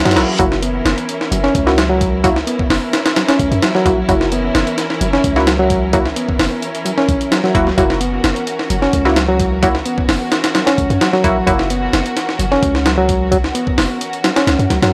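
Dry and gritty with a cassette-tape haze and light reverb, this breakbeat cut from a longer piece struts along at 130 BPM in a straight 4/4, gritty and swaggering on an F#7 chord. The sampler-style break sits up front, compressed and pitched up, with a thumpy kick, a high-tuned snare and hi-hat carrying a tape-warm edge. Beneath it, a deep, boomy 808-style bass built on a sine tone hits with a fast attack and decays, its tube saturation adding mellow weight. A reedy electric piano riff rides the middle, clean and direct yet roughened by vintage 12-bit sampler grit and tape echo. Muted, detuned sawtooth dub chord stabs with a filter pluck drift through chorus, cassette tape and tape echo until 11.7 seconds, while a rich, bowed studio string section holds smooth sustained chords with vibrato, pumping under a sidechain.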